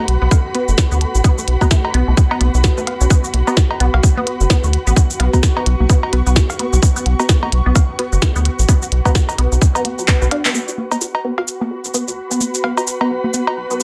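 The recording has a dense, heavily limited modern sound with light reverb, and this sparse, hypnotic minimal techno cut sits in a swung 4/4 groove. A tight, layered electronic kick drum sits up front beside a rubbery, hollow square bass that pumps against it, while a minimal click kit adds a tiny soft-clipped snare, clicky hats, handclaps and shaker, both drum parts carrying a tape-warm, large-room character. Dry analog cowbell and congas trail dub echoes through the pattern, and a juicy, squelchy blip pluck carries the riff through phaser, chorus and delay. Far in the background, an ethereal, airy pad drifts on slow, chorused swells, and a muted, very quiet dub chord stab adds deep, detuned colour. A drum fill from 10.1 seconds and a band accent at 10.4 seconds lead into the turn at 10.5 seconds as the kick and stab drop away, leaving a filter sweep running over the synth arpeggio with the bass, pad and remaining drums until the clip ends at 13.8 seconds.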